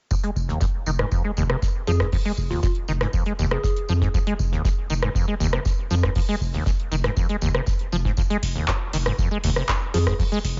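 This short acid house excerpt sits in a small room with a dulled top end, giving it a close, murky sound. At 119 BPM in straight 4/4, it holds on F minor throughout, driving and trippy. A deep electronic kick with a large-room character sits up front, joined by a dry acoustic 70s kit of hi-hat, fat snare and tambourine whose filtered hats and percussion pump with the sidechain. Shortly after, an analog drum machine with the same large-room character adds handclaps, rim click and metallic hats. The squelchy, resonant sawtooth acid bass riff stands up front with a filter sweep, tube saturation, analog chorus, sidechain pumping and dub echo, while a thick, saturated sine sub bass enters at 0.4 s and pumps beneath it. A round, gentle FM lead with a keys-like tone, vibrato, chorus and delay drifts in the background from 1.9 to 4.0 s, returning briefly near the end.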